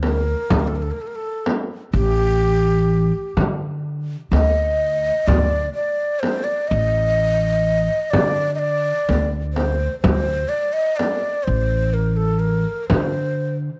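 A lightly reverberant sound opens this short excerpt of an Arabic maqam ensemble, melancholic and full of longing, moving at 126 BPM in eighths through a straight 10/8. A breathy, end-blown ney carries the melody between G4 and Eb5 with a straight tone, soft attack and lifted highs, while a woody, growly pizzicato upright bass holds the low line from A1 to D3. A frame drum played with soft hands sounds distant, as if in a large room. All three parts enter together at the start, and each falls away shortly before the fragment ends at about 13.8 seconds.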